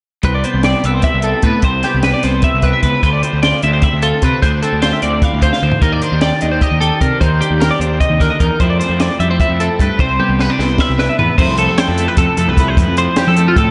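Math rock and Midwest emo in a playful, intricate 7/8, where a twangy, compressed twelve-string electric guitar chimes out arpeggios over a second clean, bright, up-front twelve-string picking its accompaniment with subtle chorus, a fuzzy overdriven picked bass growls underneath, and a compact cocktail drum kit with a high-tuned snare, punchy kick and dark cymbals adds fills at 5.5 and 10.0 seconds, all bathed in a dreamy plate-reverb haze through a lush run of seventh chords.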